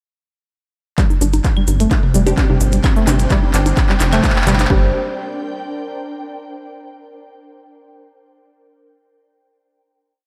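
A rubbery, hollow square-wave bass bounces off the beat up front in this quirky, hypnotic minimal techno piece in G minor at 129 BPM, joined by a punchy four-on-the-floor kick, clicky programmed hats and handclaps, grainy maracas, tape-echoed electronic bongos, claves and toms, and a twangy resonator pluck whose 10-step loop drifts against the bar under a filter sweep through a build from 1.0 s. Meanwhile a very quiet swarming drone, muted dub chord stabs and an ethereal, airy pad float in a dreamy, reverb-soaked hall. The final G minor chord lands at 4.7 s, and from 4.9 s the pad rings on alone until 6.5 s.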